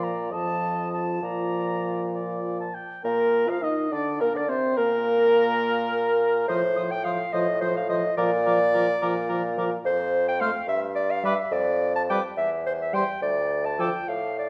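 Flute, oboe, clarinet, French horn and bassoon open together in this spirited, graceful classical-period movement for wind quintet, a rubato 6/8 in which the pure, crisp-edged flute carries the melody from the background over the oboe's mellow, lightly vibrato second line, the smooth-topped clarinet's up-front accompaniment, the vintage-toned horn and the punchy bassoon bass, all set in a wet recital-hall reverb until the flute, oboe and horn stop at 13.9 seconds and the clarinet and bassoon close this excerpt at 14.5 seconds.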